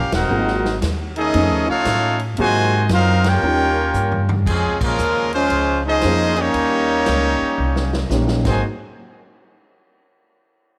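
A joyful, brassy big band swing excerpt opens on a full band accent, with the bright trumpet section carrying the melody up front over a trombone section playing a second line with light vibrato. A woody, dark upright bass, plucked and placed up front, anchors the harmony beneath them. A natural-sounding acoustic drum kit with a punchy kick and medium-tuned snare swings underneath at a lower level, adding crash, ride, hi-hat and toms, with fills near 3.9 seconds and again at the close. An intimate upright piano enters at 0.3 seconds with a boxy tone, audible action noise and long sustain, accompanying through rich extended chords. Light reverb and a small room ambience give the ensemble a lively studio feel, and the passage moves into a new section at 4.5 seconds before breaking off on a drum fill.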